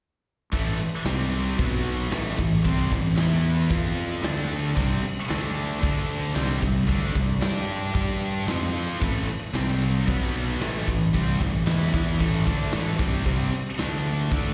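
Heavy and driving, this hard rock excerpt in A minor at 113 BPM sets a biting overdriven guitar up front beside a bright, scooped high-gain guitar, both carrying the riff with slapback echo over a punchy, fuzz-soaked fingered bass and a big acoustic drum kit with bright cymbals, a medium-tuned snare and a punchy kick, all heard as a live gig through the venue's PA with recital-hall reverb.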